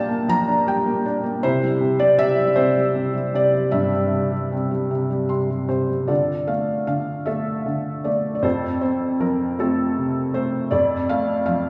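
A lyrical classical solo piano piece, wistful and melancholic, moving slowly at 52 BPM in 6/8 with a flexible, rubato feel. A felt-muted upright piano carries everything from 0.0 to 11.7 seconds, ranging from F2 up to C6, its tone soft, mellow and intimate, with a thin felt quality that sits up front. The opening harmonies pass from Gm7/Bb to C, and a brief piano fill from 4.9 seconds leads into a second section where the music settles in D minor at 6.1 seconds. There the chords move from Dmadd9 through F to Dm/F. The instrument is heard from further back in a recital hall with a wet reverb, and the passage is cut from a longer piece.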